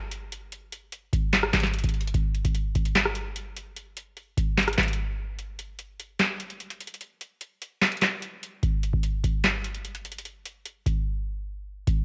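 A booming analog drum machine sits up front in this triumphant, dreamy half-time hip hop excerpt, its deep kick, crisp snare, handclaps, rim click and metallic hi-hat carrying a tape-softened cassette character, with a short room on the snare, claps and hats inside a digital ambience, and brief breaks at 5.0 and 11.1 seconds, the first leading into the second section.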